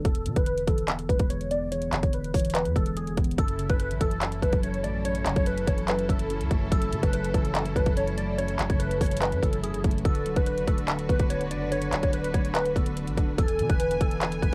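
A worn, slightly out-of-tune tine electric piano and a deep, sine-like 808 bass open this eerie, melancholic trap excerpt in F# minor, at 144 BPM with a half-time feel, as a filter sweep runs through the first 3.4 seconds. Glassy, detuned digital keys carry an airy, chorused melody over an up-front electronic kit of hard-clipped kick, metallic hi-hats and handclaps, while the chords move from E7 to F#m7, D6 and back to E7. A rich, bowed symphonic string section with smooth vibrato enters at 3.4 seconds, and a cassette-tape haze and light reverb give the whole a home-recorded feel.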